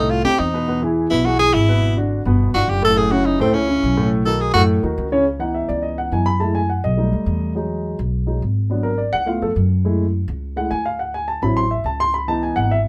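Afro-Cuban jazz at a driving 209 BPM in 4/4, sophisticated in mood and settling into C# minor from 5.3 s, taken from a longer piece. A bright, breathy tenor saxophone with subtone and scooped notes solos up front until 4.6 s over the dark, mellow grand piano, which accompanies from the start with its long sustain. The piano then takes the solo from 5.3 s, while a woody pizzicato upright bass anchors the low end from the opening through 12.9 s in a moderate studio ambience.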